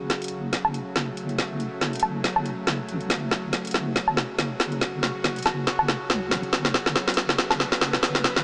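A swung, half-time groove drives this heavy, meditative deep dubstep excerpt, where an up-front garage drum kit of metallic hi-hats, a woody snare and woodblock plays a building fill throughout, over a dark, warm wobble bass thickened by chorus and a tense, string-like bowed drone whose slow attack, vibrato and ring-modulated edge carry vintage 12-bit sampler grit and its own reverb, the whole mix heard through a small-speaker sound with light digital ambience.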